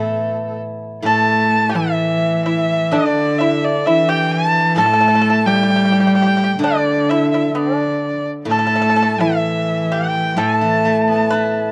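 Heard through worn, warbling cassette tape with light reverb, this festive, pastoral excerpt of Chinese traditional chamber music moves at 64 BPM in 2/4 in the A shang mode, with a clear, earthy erhu carrying the bowed melody up front with light vibrato and portamento while a dry, percussive fingerpicked pipa and an intimate sul tasto cello with a soft attack play second lines over the silvery, ringing accompaniment of a steel-string zither.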